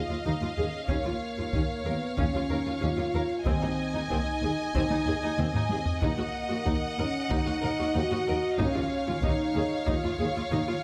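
A dark, tight French horn section holds sustained chords over an Eb pedal from bowed, rich cellos, a bowed, woody double bass section and a clear tuba in this relentless, epic orchestral film-score excerpt in Eb minor at 94 BPM, while lush violins carry the melody and a second line, expressive violas with portamento fill the middle, close taiko drums struck with hard sticks drive from 0.9 seconds with a fill at 5.4 seconds, and round, soft-mallet timpani sound briefly from 3.5 seconds under light reverb.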